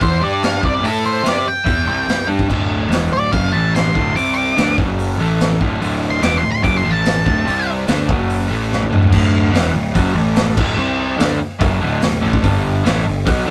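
A straight, driving garage rock groove from a raw, gritty drum kit with a punchy kick and rolled-off top sets a swaggering mood together with a double-tracked crunchy overdriven guitar riff and a growly fuzz picked electric bass, all entering at once. A dark octave-fuzz lead guitar solos up front until 7.7 seconds, and a drum fill at 8.7 seconds leads into a new section at 9.1 seconds where the riff carries on. The rough rehearsal-room sound has a moderate booth ambience and tube saturation, and this is cut from a longer piece.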